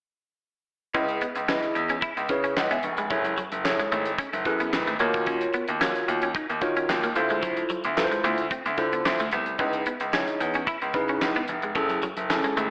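Drenched in wet recital-hall reverb with a big arena sound squeezed through an AM radio tone, this funky, late-night early-eighties boogie funk excerpt in C# minor moves at 111 BPM, with a barky, gritty tine electric piano carrying the accompaniment up front through phaser and slapback echo, a brilliant grand piano playing the bass line, a clean, twangy electric guitar riff coated in lush chorus, and a damped, dry 70s drum kit with fat snare, tight kick, hi-hat and handclaps, over a progression of C#m9, F#m9, D#m9 and Dm9 chords.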